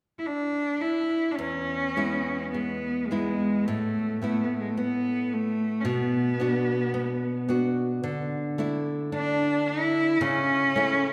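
A single bowed cello opens at 0.2 s, its rich, focused tone carrying a tender, nostalgic melody with vibrato in this Celtic slow air, drifting freely around 53-56 BPM in E mixolydian. At 1.4 s a bright, fingerpicked nylon-string guitar joins in classical style, supporting the line through chords of E, Asus2, Bm and Dsus2, with both instruments sitting up front. A lush reverb gives the performance the airy glow of a church or concert hall, and the piece is cut from a longer work.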